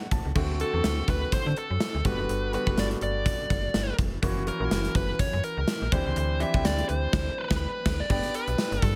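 Romantic and nostalgic, this short cut from a longer 1980s-style pop piece moves at 124 BPM in 4/4 with a light swing on the sixteenths. A clear concert grand piano opens with a brief fill as the band comes in, then settles into a polished, present accompaniment with deep low notes and short sustain. A slap-like FM bass adds a snappy, metallic, digital edge beneath it, while a gated 80s drum kit of punchy kick, medium-tuned snare, hi-hat, tambourine and bright crash cymbals sits up front in a bright stone room with gated reverb. From 0.6 seconds a dark, smooth electric lead guitar, picked and overdriven, carries the melody in a narrow upper range near the front of the mix. The harmony moves through D7, Gmaj7, F#7 and D9sus4 before landing on G, with a band accent between 7.1 and 8.1 seconds, all set in a light small-room ambience.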